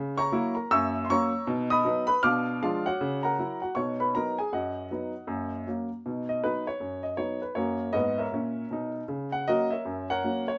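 Playful and exuberant, this brief stride piano fragment at 157 BPM in B major swings along on a solo baby grand that sounds intimate and up front, its action noise audible in a moderate studio ambience as it moves from an opening passage into a new section at 6.0 seconds before cutting off at 10.6 seconds.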